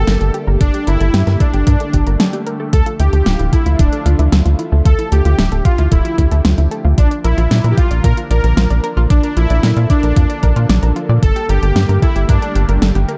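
Driving and moody, this short synthwave excerpt moves in a straight four-four pulse under a dark production with little reverb. A tight, punchy sequencer bass sits up front, its sawtooth and square tones saturated and mellow, while an overdriven electronic kick thumps in from 0.6 seconds alongside a layered pop kit of fat snare and metallic hats that sounds re-recorded in a small room. A smooth, detuned supersaw carries the melody with a trail of delay, and beneath it a lush, thick unison pad holds bright sustained chords with chorus, phaser and sidechain pumping. A round analog pluck with a sub octave spins arpeggios in the background through chorus and digital delay. A brief break at 2.2 seconds interrupts the groove before the harmony shifts from Gmadd9 to Dmadd9, then Bb, and back to Gmadd9 at 11.2 seconds.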